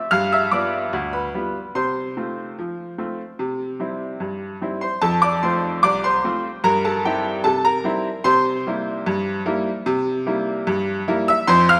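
A bright, worn grand piano sits up front and carries this jaunty, playful ragtime fragment alone, its short-sustain notes ranging from C2 to F6 at a straight 74 BPM in 2/4, tuned to A4 = 438 Hz. The harmony moves from G7 through F/C to C, then shifts at 5.0 s to a new passage on F, C7/G and C7. A moderate concert hall reverb of about 1.8 seconds gives the open piano tone a spacious, church-like glow before the piece is cut off at 11.8 s.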